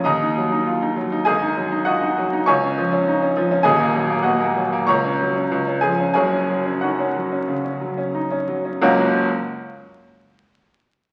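Rubato in common time, this sparkling, heroic virtuoso piano study, cut from a longer piece, slows from 2.5 seconds as its D#-minor harmony moves through C# and F# chords toward an F# arrival at 8.8 seconds. The solo baby grand sounds brilliant and up front, its notes ringing with a short sustain across a broad span from deep bass to high treble before it stops at 9.3 seconds. A wet recital-hall reverb and the crackle of a very old 78 rpm record surround the playing.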